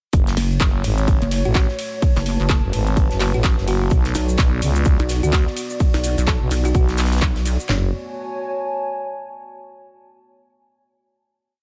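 Bass house with a bouncy, aggressive swing, built on a punchy, up-front house kit with cracking snare and four-on-the-floor kick, layered with a big-room kit's metallic hats, claps and ride, a very quiet tight metal kit playing an edited breakbeat loop, and a grainy egg shaker joining at 3.9 seconds. Two up-front basses drive the drop: a growling FM bass with overdrive in chopped phrases, and a pulsing, detuned wobble bass with tube saturation and chorus whose wobble speed changes as it answers the other bass. In the background, a moody, nasal analog pad and a warbling, lo-fi tape-like pad hold dark chords, both pumping with the sidechain, while a round, tine-like thumb-piano pluck with tape echo adds short phrases, and the tape-like pad carries the final chord alone out to 9.5 seconds.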